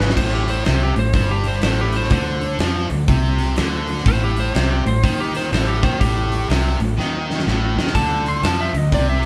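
Driving and swaggering, this short swung blues rock and southern rock clip, cut from a longer piece, pairs a dark, slightly broken-up lead guitar melody with a bright, double-tracked overdriven guitar riff, a round, foam-muted fingered bass and a big, up-front rock drum kit with a fat snare and punchy kick, all played live in one small room over Am7 and Dm7 chords, with drum fills at 0.0 and 7.0 seconds.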